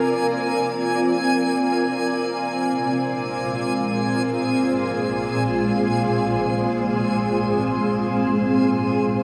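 Luminous and dreamy, this ambient fragment floats in free time over a single Bb7 chord, carried by an up-front granular cloud pad whose blurred, detuned sine tones sustain across its full length, softened by their own reverb and a lush chorus. A very quiet fingerpicked concert harp rings out arpeggios only until 2.6 seconds, while a reversed, bright granular texture hovers high above the whole time. The mix is soaked in a lush hall reverb, giving the piece a hazy, weightless glow.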